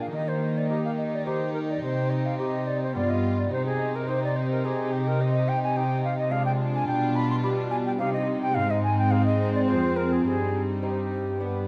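Dramatic and stormy, this excerpt of a baroque-style concerto movement in 3/4 at 107 BPM, settling into C minor from 5.2 s, sets an airy, distant silver concert flute melody over gut-string period-style violin sections (one carrying a faint background melody, the other a second line), a dark, nasal viola section, a delicate fingerpicked lute with double strings in the background, and a rich cello section bass up front, all bathed in a wet recital hall reverb.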